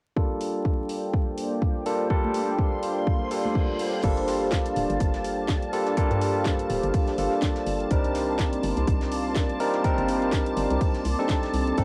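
Warm in mood, this excerpt sounds like a home recording on cassette, with vinyl crackle and a light reverb over a late-night deep house groove at 124 BPM in G minor, swung on the sixteenths. An overdriven, punchy electronic kick sits up front beside a barky, clean tine electric piano played as stabs through a combo amp, its filter sweeping while analog delay trails behind it. A house kit with a cracking snare and bright hats adds overdriven shine, and in the background a smooth, detuned sawtooth analog pad holds sustained chords alongside a warbly, nostalgic tape-like pad treated with chorus and phaser. A silky string machine glides in high above, and high-tuned congas played with soft hands appear briefly from 2.2 seconds before an electronic reverse cymbal leads into a new section at 4.0 seconds. There a hollow, bouncy FM bass takes the low end with sidechain pumping, a very quiet brushed kit joins, and the harmony shifts from Gm7 to Cm9 at 7.9 seconds.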